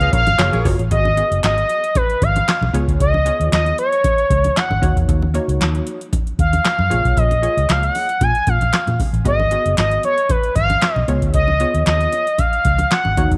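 Late-night and funky, this excerpt of early-eighties boogie funk moves at 115 BPM in a straight 4/4, set in G# dorian with a slightly low tuning of A4 = 439 Hz. An expressive synth lead carries the melody up front, its smooth sawtooth-and-triangle voice softened by a gentle attack, vibrato and ring modulation, and colored with chorus and tape echo. Beneath it, a funky polysynth comp of detuned sawtooth and square waves plucks through a filter with chorus, while a dark, foam-muted fingered electric bass gives round, punchy low notes. A booming analog drum machine sits up front with a deep kick, tonal snare, metallic hats and handclaps, and bright, low-tuned congas played with hard hands add dry percussion in the background. A mellow horn section appears only briefly at the very start, before 0.7 seconds, and the harmony then moves through G#m7, C#7, D#m7 and A#m7 under a light reverb.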